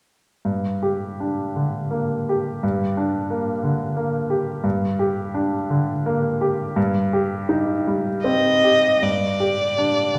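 Yearning and solemn, this fragment of a romantic classical duo for violin and grand piano unfolds in triple metre with a flexible, rubato feel. A clear, natural-sounding baby grand opens the passage at 0.4 seconds, laying down low to middle-register accompaniment with a short sustain and a close presence. The bowed violin enters late, at 8.2 seconds, singing a high melody with a rich, focused tone, expressive vibrato and a smooth top end, placed up front above the piano. Just after, at 9.0 seconds, the music turns into a new section as the harmony settles onto a bare, open sonority. A wet recital hall reverb surrounds the pair, giving the sense of listening from further back in the room before the passage breaks off.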